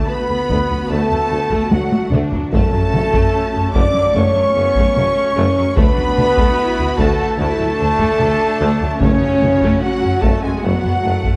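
Built on lush bowed strings, this dramatic, heroic cinematic orchestral passage carries its melody on a distant violin section beside a focused second violin line, a pure, bright flute section and expressive violas with portamento, over soft-attack French horn chords, roomy trombone chords, smooth cellos and a rich double bass section; a clear tuba and heavy-sticked taiko ensemble join at 0.5 seconds, with a drum fill at 1.7 seconds and round, soft-mallet timpani at 9.0 seconds, all in a dark, warm concert-hall sound.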